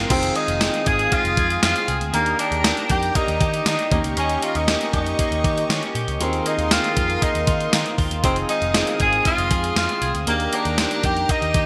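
Bright 1980s-style digital production with a moderate plate reverb frames this nostalgic, urgent 1980s-style pop excerpt at 118 BPM in F dorian, where an up-front tenor saxophone with light vibrato carries the melody over a gated drum machine with a thumpy kick and gated-reverb snare, a dark, round, foam-muted picked bass, a warm concert grand piano, a clean twelve-string electric guitar riff treated with lush chorus and digital delay, a thick detuned sawtooth pad holding sustained chords, and a very quiet, inharmonic FM synth chime tracing a second line.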